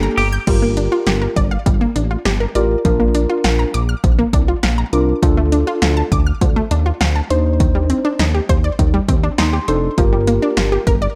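Cool and nocturnal, this synth-pop passage, cut from a longer piece, moves through Gm7, Bb, Dm and Cmadd9/Eb over a straight 4/4 pulse from a punchy analog drum machine, whose kick, snare, hi-hat and crash sit up front with the ambience of a large room. A glossy, retro chorused synth bass anchors the low end with a mellow pulse-and-sawtooth tone, while a round, detuned analog pluck spins bright arpeggios through chorus and delay. Muted, felt-like synth keys add dark, intimate accompaniment and a brief fill at 9.1 seconds, all in a dry, close mix.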